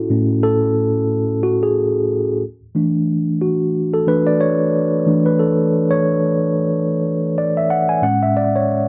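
A mellow tine electric piano opens the recording alone and carries it from 0.0 to 8.9 s, playing solo across a range from A2 to G#5. This short soul passage, cut from a longer piece, moves at 91 BPM in 4/4 with a gentle 58% swing on the sixteenths, giving it a smooth, warm mood. The harmony rests on Amaj7, shifts to E7sus4 at 2.4 s, and returns to Amaj7 at 8.0 s. The piano's tone is clean and heard through its built-in speakers, sitting up front in the mix. The sound is that of a dry, close 1970s-style studio recording, touched by a light reverb.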